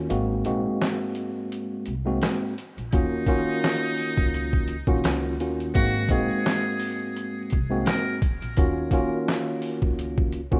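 Boom-bap hip-hop in Eb dorian, this moody, dark fragment cut from a longer piece sways at 85 BPM in 4/4 with a light swing on the sixteenths. A worn, slightly out-of-tune tine electric piano sits up front, lightly overdriven and filtered as if heard through its built-in speakers, cycling between Ab9 and Ebm9 chords beneath a woody pizzicato upright bass. The sampler-style trip hop drum kit is compressed, pitched down and gritty, re-recorded in a small room with a medium-tuned snare, hi-hat and handclaps; its thumpy kick stays muted until 2.9 seconds. At that point a muted trumpet with a metal mute enters with a jazz-style solo, buzzy and thin with light vibrato, sounding distant and roomy through filtering and tape echo until 8.2 seconds. The rough home-demo mix carries little reverb and a layer of vinyl crackle.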